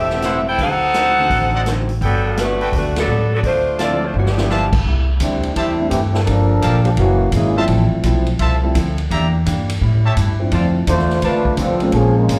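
A tight, clear saxophone section with vibrato carries the melody over woody pizzicato upright bass, a mellow grand piano, a clean hollow-body archtop guitar in the background and a swinging big-band kit with a punchy kick, while a present trumpet section adds stabs in this joyful big band swing excerpt at 169 BPM in G major. After a band accent at 2.9 seconds and a drum fill, the music moves to C major at 4.9 seconds, where a smooth-topped trombone section takes a solo as the chords run through rich sevenths and ninths. The whole band is heard as a live club gig through the venue's PA, with moderate room reverb, plate reverb on the horns, piano and guitar, and slapback echo on the brass, piano and guitar.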